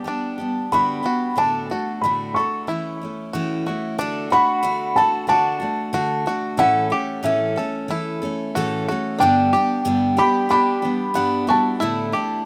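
Recorded dry and outdoors with a faint mains hum, this short, pastoral and gentle acoustic folk passage in D major moves at 92 BPM in a straight 4/4, with every part carrying a slapback echo. A felt-muted upright piano carries the melody in a dark, boxy, intimate tone over a bright, full-bodied picked steel-string acoustic guitar and twangy, percussive bluegrass banjo arpeggios. At 4.3 seconds a lap resonator guitar joins with a metallic, nasal slide second line, and the harmony comes to rest on an Asus4 at 11.8 seconds.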